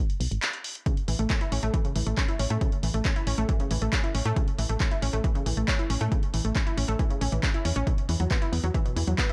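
Uplifting trance at 137 BPM in 4/4, this short cut from a longer piece feels emotional and driving, set in a dark, digitally ambient production. A punchy analog drum machine supplies handclaps and hi-hats from the opening moments, the hats pumping with sidechain, while a solid FM bass, round and up front with a fast attack and decaying tail, pumps beneath from G#1 to A2. After a brief break from 0.4 to 0.9 seconds, an up-front electronic kick lands and the analog pluck arpeggios enter, a detuned sawtooth sound with a filter pluck, chorus, delay and sidechain pumping, ranging from B2 to E4. The harmony rests on A before shifting to Esus2 at 7.9 seconds.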